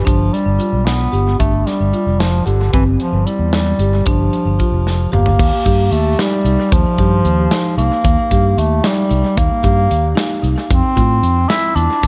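Progressive instrumental in a straight 5/8 at 226 BPM in eighths, this intricate, driving cut from a longer piece puts a clear, up-front bass clarinet melody with light vibrato and scooped notes over woody soft-mallet marimba arpeggios, a round, punchy fingered electric bass and a bright-cymbaled studio drum kit, the clarinet, marimba and drums all carrying dub echo in a lightly reverberant, echo-heavy mix, with chords moving from G7 over a G pedal to Eb after a drum fill at 4.9 seconds, where a grainy, very quiet egg shaker enters at 5.4 seconds before Fmaj7 arrives at 10.7 seconds.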